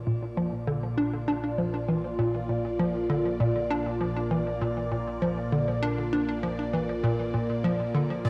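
A swirling, phased analog pad holds sustained Bb major chords over a round sub bass that fades in from the background, and at 0.1 s a bright, bouncy square-wave pluck enters up front with a detuned riff soaked in chorus, delay and shimmer reverb. This cosmic, luminous stretch of sequencer-driven space music moves at 99 BPM in a straight 4/4, its cassette-tape grain and moderate spring reverb giving it a homespun haze. Just at 8.2 s, a breathy, flute-like synth lead with gentle vibrato touches a single high note before the cut.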